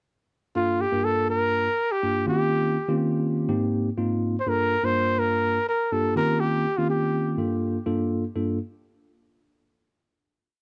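A dry, close 1970s-style studio sound with small-room ambience frames this short, intense, nocturnal jazz piece in G minor at 124 BPM, where an up-front solo trumpet with a warm, smooth top plays motif-based call phrases with vibrato and scooped notes from 0.6 to 7.3 seconds, over a clean tine electric piano heard through its built-in speakers, pushing rootless chords through Gm9, Eb13 and Abmaj9 until a final chord arrives at 8.3 seconds.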